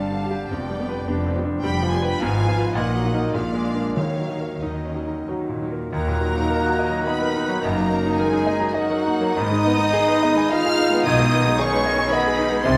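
Classical romantic piano-and-orchestra music in Eb minor, passionate and brooding, moving in a rubato 3/4 at 89-116 BPM, with a bright, brilliant concert grand carrying the melody up front alongside a lush, vibrato-rich symphonic violin section. Underneath, a smooth second violin section, very quiet viola, dark expressive cellos, focused close double basses and distant, roomy French horns holding sustained chords build a rich bed, while timpani sound briefly on Eb from around 4.0 s. At 5.9 s a mellow, hollow flute ensemble and a very quiet classical clarinet add second lines, all in a moderate scoring-stage reverb in this passage cut from a longer piece.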